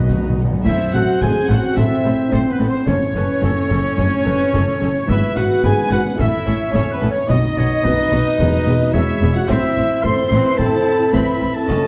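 Dark, distant French horns carry sustained chords at the front of this heroic, triumphant cinematic adventure cue at 109 BPM, with soft-mallet timpani opening the passage and returning at 8.4 s, as smooth bowed violin sections, a roomy oboe and a clarinet weave melody and second lines over expressive violas, mellow trombones, subdued trumpet stabs, woody cellos, lush double basses and background snare, bass drum and clash cymbals in a reverberant recital hall.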